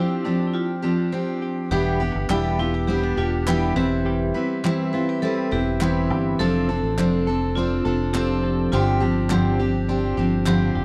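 A full-bodied, picked steel-string acoustic guitar sits up front in this carefree, sunny acoustic pop excerpt, picking out the accompaniment in a straight 4/4 feel. Behind it, a bright, airy vibraphone struck with hard mallets carries a ringing second line with a medium motor vibrato, while a clean, compressed electric guitar, recorded direct with a scooped tone, plays quiet arpeggios in the background. At 1.7 seconds, once the opening break gives way, a warm, round fingered electric bass enters up front, and crisp group handclaps join at 2.3 seconds. The harmony drifts through relaxed seventh chords, moving from G7sus4 through Em7, Cmaj7/E and Dm7/F before returning to G7sus4. The sound is dry and close, with the intimate feel of a 1970s studio recording.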